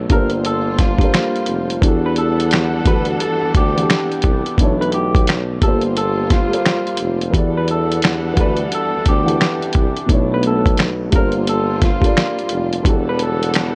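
Hazy and nostalgic, this lo-fi hip hop cut swings gently in 4/4, cycling through Gm11, Em11 and Bm11 chords in a small room ambience. A dark, woody upright piano with a cassette-tape tint and a lush bowed string section hold the harmony, while a distant tuba with light vibrato and scooped notes carries the bass in a jazz style. A slightly broken-up electric guitar plays a compressed, fingered melody from 0.1 to 13.5 seconds over an up-front sampler-style kit of finger snaps, hi-hat, snare and a thumpy kick.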